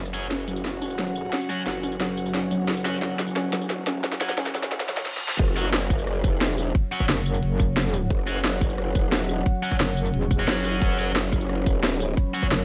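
A growling, saturated bass drives this aggressive, tense dark technical drum and bass excerpt, where an airy breathy pad floats beside a warbly, lo-fi pluck arpeggio that rides a filter sweep through the build-up alongside overdriven guitar stabs with dub echo, a deep, moody pad and a drum kit with a cracking snare and crisp hats, until a very quiet riser and reverse cymbal lead into the drop at 5.4 seconds, where a tight, tape-warm kick enters and a metallic FM wobble bass joins at 7.1 seconds.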